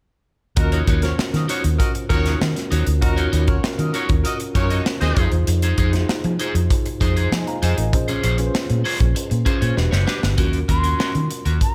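Polished 1980s jazz-funk pop in Eb dorian at 98 BPM, this short cut from a longer piece has a slick, urban mood and a straight 4/4 feel. A dark, round, foam-muted fingered bass sits up front with a punchy, amped tone, alongside a modern acoustic drum kit playing hi-hat, punchy kick and a medium-tuned snare in a pumping studio room. A mellow tine electric piano heard through its built-in speakers carries the accompaniment with a subtle chorus, while a bright, twangy picked electric guitar at the edge of break-up plays a riff coated in lush chorus. A distant, roomy horn section adds a jazz-style second line only until 5.3 seconds, and the harmony moves from Ebm7 through Fm7 and Bbm9 to Em7 before a drum fill leads back to Ebm7 at 10.4 seconds. At 10.7 seconds a pure, straight-toned silver flute with a crisp attack enters briefly on the melody, carried into the distance by digital delay, all set within a generous studio reverb.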